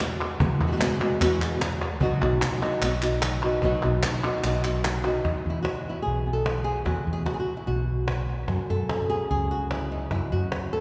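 A straight 4/4 pulse at 148 BPM drives this proud, festive flamenco excerpt in E major, tuned slightly low to A4 = 438 Hz. A woody cajon with faint snares plays throughout, joined by crisp palmas hand claps that stop at 5.2 seconds, just after a drum fill at 5.0 seconds. Up front, a fingerpicked flamenco guitar carries the melody with audible finger squeak, while a second, very quiet flamenco guitar adds stabs during the opening stretch. Beneath them, a dark, round fretless electric bass with an amped, hollow-body tone holds the low end. The harmony moves from Eadd9 to B, then to Esus2 and F#m7 in the second half, all set in a wet church reverb.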